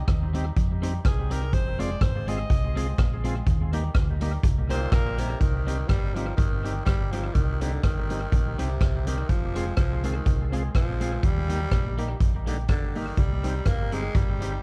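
Dry, dark and warm, this mischievous, driving ska piece, cut from a longer work, moves at 124 BPM in C minor with a light swing: a bright, lightly vibrato alto saxophone with analog delay takes a solo melody until 5.4 seconds, and a raspy, growling tenor saxophone with delay enters at 4.7 seconds to carry the tune, over a boomy, up-front street-band drum kit of hi-hat, kick drum and rim click, a round hollow-body fingered electric bass, a twangy, compressed clean electric guitar with delay, and a reedy, lightly overdriven tonewheel organ with key click, slow rotary speaker and delay playing stabs in the background.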